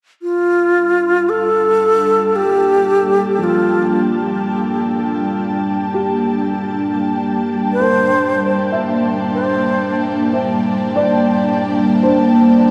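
Reflective and serene, this ambient excerpt opens on a Gm7 chord with a breathy, vibrato-tinged alto flute singing the melody up front from 0.2 seconds, soon cushioned by an ethereal airy pad of detuned, chorused sustained chords, while a felt-muted upright piano with a boxy, intimate tone gradually fades in with mellow arpeggios from 3.4 seconds, the flute, pad and piano trailed by shimmer reverb and the whole excerpt set in a dark, warm cathedral-like space.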